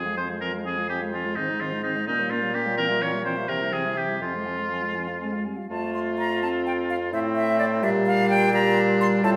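Cheerful and spirited, this quick classical-period movement for wind quintet moves at 84 BPM in a straight 6/8, beginning in F minor and brightening into F major at 5.7 s. The airy silver flute carries the melody with vibrato and a soft attack, while the clear oboe sits up front on a second line, the dark French horn and mellow, distant clarinet fill in the accompaniment, and the warm bassoon anchors the bass. A wet recital-hall reverb surrounds the ensemble in this short passage cut from a longer piece.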